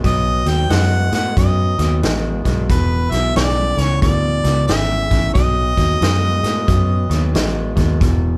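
A band playing live in one room is caught with light reverb and a vintage tone in this short, cut-off slice of an electric blues shuffle with a swaggering, laid-back swing. Up front, a warm, smooth-topped harmonica carries the melody in a jazz-style solo, with light vibrato and scooped notes, before dropping out at 7.3 seconds. Beneath it, an electric guitar through a small old amp picks a low riff with a slightly broken-up, compressed, lo-fi edge. A dark, round, foam-muted electric bass, fingered and amped, sits prominently in the mix. The acoustic drum kit brings hi-hat, a punchy kick and a medium-tuned snare with a natural studio-room sound and a rolled-off top, stopping at 8.2 seconds. The changes move from B7 to E7 and back to B7.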